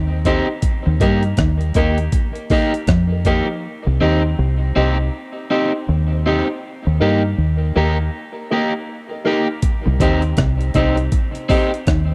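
A deep, round fingered bass sits up front through this heavy, hypnotic dub reggae excerpt, with a swung sixteenth feel over Cm and Eb chords. A gritty, compressed breakbeat kit with a thumpy kick, hi-hat and rim click drops out at 3.5 seconds and returns at 9.6, while a slightly broken-up electric guitar with spring reverb and tape echo carries the accompaniment throughout. A dark, woody upright piano with audible action noise adds short, slightly detuned stabs through tape echo, and a very quiet, clean hollow-body guitar plays a riff at the start and again near the end, all in a dry, close 1970s-style studio sound.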